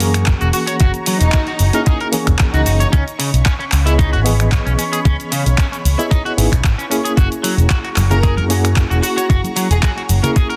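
Nu-disco at 113 BPM in F# mixolydian, this sunny, feel-good passage cut from a longer piece rides a lightly swung 4/4 groove over chords moving from F#7 to C#m7 and back to F#7 at 7.2 seconds. An overdriven, thumpy electronic kick sits up front beside a picked electric bass run through an envelope filter, while a layered house kit of finger snaps, handclaps, hi-hat and shaker fills in the pulse with a small room reverb. A reedy electric piano with fast tremolo, sidechain pumping and analog delay carries the accompaniment, and a slightly broken-up, twangy electric guitar plays a riff from 0.4 seconds with subtle chorus and delay. A lush, detuned sawtooth pad with a slow attack holds sustained chords in the background through chorus, phaser and sidechain pumping. An expressive studio violin section, bowed with vibrato and portamento, states the melody early and returns at 8.1 seconds, as bright maracas and congas join quietly in the back. 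The mix is dry, dense and heavily limited in a modern style.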